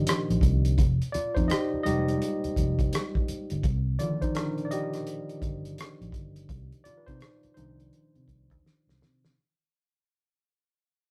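A rough rehearsal-room recording with tube saturation and a moderate studio reverb gives this short neo-soul and R&B excerpt a gritty, late-night intimacy, and the whole passage fades out from its first moment. At a relaxed 84 BPM in 4/4 with a swung sixteenth-note feel, it sits in C minor, tuned a touch below standard pitch to A4 = 436 Hz. The tine electric piano sits up front, worn and slightly out of tune yet clean, heard through its built-in speakers as it carries a soulful solo over Cm11, Fm11 and back to Cm11. Beneath it, a vintage muted fingered electric bass plays a dark, foam-muted, round and punchy line, while a cloth-damped, thuddy acoustic drum kit, also up front, brings a fat snare, a tight kick, rim clicks and hi-hat with a saturated, rolled-off top. The drums close the passage with a fill at 8.6 seconds.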